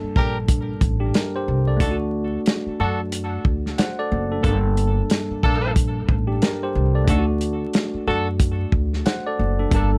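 Moody and dark, this boom-bap hip-hop cut from a longer piece moves at 91 BPM in 4/4 with a 60% swing on the sixteenths, alternating between Gmadd9 and D. A muffled, dry soul drum kit with a tight kick sits up front beside a woody, thumpy pizzicato upright bass on gut strings, while a clean tine electric piano, run through cassette tape and filtered, carries the accompaniment throughout. A punchy horn section with light vibrato adds filtered stabs touched with tape echo, and the close, nearly reverb-free sound is dusted with vinyl crackle and a faint mains hum.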